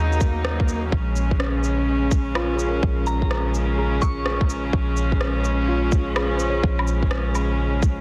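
A soft, round 808-style bass sits deep and up front, its dark sine tone pumping against a tight, layered electronic kick in this nocturnal, wistful future garage cut from a longer piece, moving at 126 BPM in Bb minor with a 64% swing on the sixteenths. A bright chamber string section holds bowed chords with light vibrato and an earthy edge, while a clean tine electric piano adds accompaniment through tape echo, both breathing with the same sidechain pump. An electronic shaker, rim click and woodblock, re-recorded in a large room, fill out the groove, and a faint electronic swell sounds in the background between 0.1 and 0.9 seconds. From 3.1 to 4.5 seconds, a gentle FM synth bell drifts in high and mellow, warbling with chorus and tape echo. The chords move from Ebm7 to Bbm9, and the dry, dense, heavily limited master carries a cassette tape character.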